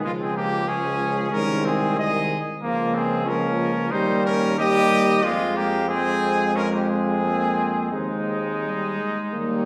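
Moving with a flexible, rubato pulse around 91 BPM in 4/4, this solemn, heroic classical brass quintet excerpt in Ab major unfolds over a stately progression from Db through Ab/C, Bbm/Db, Eb and Fm to Ab/Eb. A warm-toned lead trumpet with light vibrato carries the melody up front, supported by a second trumpet line beneath it. A clear, soft-attacked French horn sits in the background, and a smooth-topped trombone adds to the accompaniment, while a vintage-sounding bass trombone anchors the low end. The ensemble rings out in a reverberant recital hall, giving the lead trumpet a distant, roomy presence.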